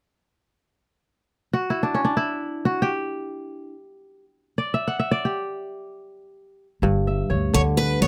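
Joyful and flowing, this short excerpt of West African traditional string and xylophone music unfolds in free time in G lydian, opening with a ringing, crisp kora playing solo, its arpeggios beginning at 1.5 seconds. At 6.8 seconds the music settles onto a G chord as a woody, dark pizzicato upright bass enters low beneath it, and a bright, picked steel-string acoustic guitar adds a brief melody from 7.5 seconds. All three instruments sit up front, captured by close, detailed microphones with light reverb.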